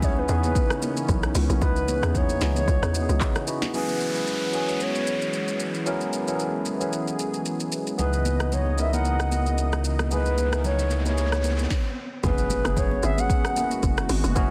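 Dense, heavily limited and lightly reverberant, this deep, soulful amapiano cut comes from a longer piece and rides a gently swung 16th-note groove. A hollow, woody, clarinet-like synth lead with vibrato, chorus and tape echo carries the melody over a clean tine electric piano bathed in lush chorus, while a smooth, detuned sawtooth pad pumps with sidechain as the harmony moves between C#m9 and F#9sus4. Up front, the electronic afro-pop kit pairs a deep kick and a sharp, softly clipped snare with metallic hats, handclaps, rim clicks and shaker, the whole kit carrying vintage 12-bit sampler grit, while bright, high-tuned congas sit distant in a large room. A bouncy, percussive log drum bass opens the passage, and a full sine-and-triangle sub bass with its octave takes the low end from 8.0 seconds. Electronic downlifter, riser and impact effects shape everything from 3.7 seconds on, and after a brief stop the drop and the log drum bass return at 12.2 seconds.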